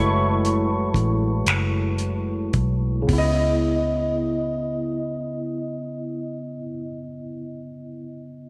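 A barky, lightly overdriven tine electric piano with chorus takes a bright, up-front solo over a round, foam-muted vintage electric bass as this late-night, sultry slow six-eight R&B fragment eases down from F#m7 to C#m9, while a dry, cloth-damped drum kit of finger snaps, hi-hat and a tight kick joins at 0.4 seconds and drops out at 3.4 seconds, all set in a small room with light reverb.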